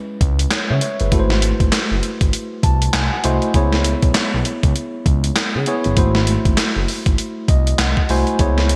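An up-front, sampler-style drum machine drives this bouncy, punchy new jack swing excerpt, its thumpy kick, handclaps and hi-hat framing a snare drenched in gated reverb, all with a tape-warm edge. A tine electric piano opens the clip alone at 0.0 s, sounding clean as if heard through its built-in speakers, and the drums and bass join at 0.2 s. The synth bass is smooth and dark, a detuned, saturated blend of sawtooth and triangle with a fast attack, sustained notes, vibrato and gliding portamento, shaped by a moving notch. The electric piano adds fills beginning at 2.3 s and 7.2 s, over a swung sixteenth-note groove that moves between C#m7 and G#7b9b13. A moderate plate reverb and bright 1980s-style digital production give the whole a punchy sheen, and the passage is cut from a longer piece.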